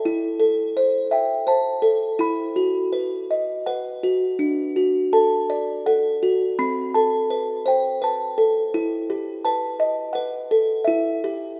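Dreamy and wistful, this children's lullaby drifts in a gentle 3/4 at about 83 BPM with a loose, rubato feel. A lone music box with a large-box body carries the whole passage up front, its delicate, tinkling plucked notes ranging from C4 to B5 and moving through minor-leaning chords from Am toward a closing Em. A lush hall reverb with a 2.7-second tail softens the rough home-demo sound of this 11.6-second fragment cut from a longer piece.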